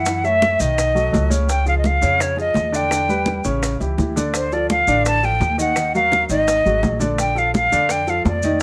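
A lively 168 BPM groove in straight 4/4 drives this short, sophisticated Afro-Cuban jazz excerpt, with close, hard-handed congas and round, low-tuned bongos sitting in the background while grainy, saturated maracas add texture. Up front, a breathy, mellow concert flute carries the expressive melody with vibrato and a soft attack, over short-sustain baby grand piano chords and a woody, thumpy pizzicato upright bass on gut strings. The harmony moves quickly through colourful chords such as Gbm7, B9, Em7 and Bbmaj7, all set in a moderate club reverb.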